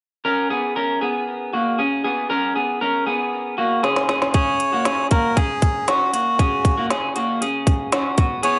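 A slightly broken-up electric guitar through a small old amp plays picked arpeggios with subtle chorus from 0.2 seconds in this bright, youthful jangly indie pop cut at 117 BPM in F# major, moving over F#sus2 and C#5 chords, joined by an overdriven electronic drum kit with a tight kick, woody snare and crisp hats that enters with a fill at 3.8 seconds, and a reedy, breathy melodica melody arriving at 4.3 seconds, the whole mix sitting in a moderate large-studio reverb.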